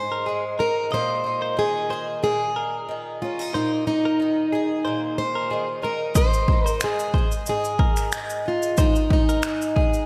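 Carefree and easy-going, this excerpt of acoustic pop in Ab major moves at 92 BPM with a light sixteenth-note swing, as a warm, up-front fingerpicked plugged-in steel-string acoustic guitar carries the melody with slapback echo and delay over a shimmering, octave-doubled twelve-string acoustic guitar playing double-tracked accompaniment, a bright, compressed clean electric guitar recorded direct adds arpeggios from 0.1 seconds, and at 6.2 seconds punchy, tape-warm 80s electronic pad drums with finger snaps, kick and shaker arrive, all set in a lush hall reverb with a big arena sound.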